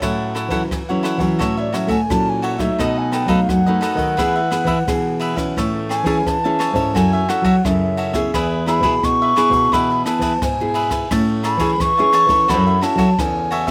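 A straight 4/4 groove at 87 BPM in A major drives this joyful, lively samba and choro excerpt, with brushes on an airy jazz kit with a punchy kick, dark cymbals and rim clicks under a crisp, picked cavaquinho, a thumb-plucked nylon-string guitar playing shadowy chords and a full-bodied, fingerpicked nylon-string guitar on bass, until at 1.6 s a reedy, pure-toned wooden baroque flute with vibrato and slapback echo takes the lead, tongued clearly over a dry, open-air sound.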